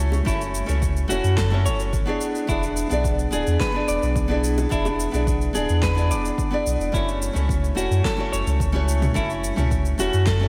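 An electronic kick drum with a punchy, layered, produced sound drives a straight 108 BPM pulse in 4/4 alongside a deep house kit of shaker, toms and a fat snare, while very quiet, low-tuned bongos with a round, saturated tone appear in short bursts near the start, around 4.6 s and again near the end. This relaxed, sunset chillout fragment in F# minor, tuned to A4 = 444 Hz, is cut from a longer piece and moves from F#m7 to E7 at 2.2 s before returning to F#m7 at 6.9 s. A deep, sine-like sub bass with tube saturation sustains underneath, mellow and rounded with a fast attack. Up front, a fingerpicked nylon-string guitar plays classical-style accompaniment with audible finger squeak and analog delay. A dark, clean semi-hollow electric guitar picks arpeggios, touched by spring reverb and analog delay. The whole mix is soaked in a lush hall reverb, giving it a dreamy, warm glow.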